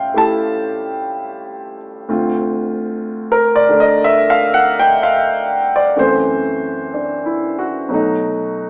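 A grand piano plays alone through this brief, late-night solo jazz fragment in D minor, its present, up-front tone carrying a long sustain across a range from D2 to A5. At a slow 62 BPM in a swung 4/4, the harmony moves from A7b13 to Dm7, then through F#m7b5 to B7 near 7.9 seconds, with a cool mood. A moderate large-studio reverb surrounds the instrument, while the overall sound has the character of a small speaker, and the passage is cut from a longer piece at 8.7 seconds.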